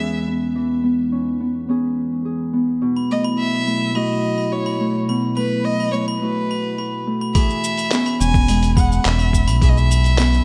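A straight 4/4 pulse at 106 BPM carries this hopeful, pastoral folktronica piece. Up front, a mellow, thumb-plucked Celtic harp plays filtered, delayed arpeggios, while a rich, boxy violin carries the melody with vibrato and portamento through delay over a warbling, nostalgic tape-like pad of chorused chords that stops at 7.3 seconds. A bright, sparkling glockenspiel with brass mallets adds a second line from 3.0 seconds, and then a muffled, pitched-down lo-fi sampler-style kit of cabasa, handclaps and hi-hat enters at 7.3 seconds, with a thumpy electronic kick arriving at 7.4 seconds, joined soon after by a round, deep analog bass, with the whole mix set in a light studio reverb.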